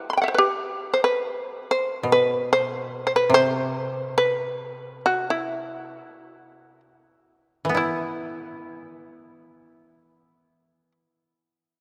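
A buzzing, percussive shamisen opens this solitary, austere excerpt of Japanese chamber music in E hirajoshi, carrying the melody up front at a rubato 44 to 72 BPM; a woody, fingerpicked koto joins lower down as accompaniment at 2.0 seconds, the pulse slows from 3.7 to 7.8 seconds before a new section begins, and a long church reverb surrounds the pair.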